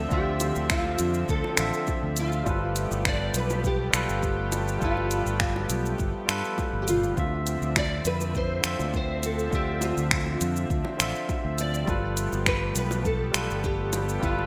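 A small, dark nylon-string guitar carries the fingerpicked melody through ensemble chorus and digital delay in this wistful sunset chillout excerpt at 102 BPM in D dorian, moving between Dm9 and G9. Beneath it, a bright, barky tine electric piano with 12-bit sampler grit and a low-pass filter plays the accompaniment, while a thick, warbling detuned sawtooth pad holds sustained chords in the background and a round, up-front fingered electric bass anchors the low end. An up-front deep house kit of finger snaps, dark hi-hat, shaker and toms with gated reverb joins a layered electronic kick and very quiet, low-tuned bongos, all set in a lush hall reverb with a bright 1980s-style digital sheen.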